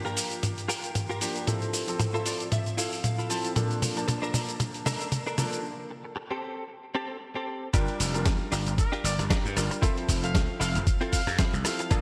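Cosmic and groovy, this swung nu-disco clip opens with a brilliant grand piano and a scooped, clean electric guitar riff with chorus and delay over an overdriven, dusty sampler-style kit and a thumpy electronic kick building through a drum fill and a break, until the drop at 7.7 seconds brings in a growly, punchy slap bass and, from 8.8 seconds, a clear trumpet section with light vibrato, all set in a lush hall reverb with bright 1980s-style digital polish.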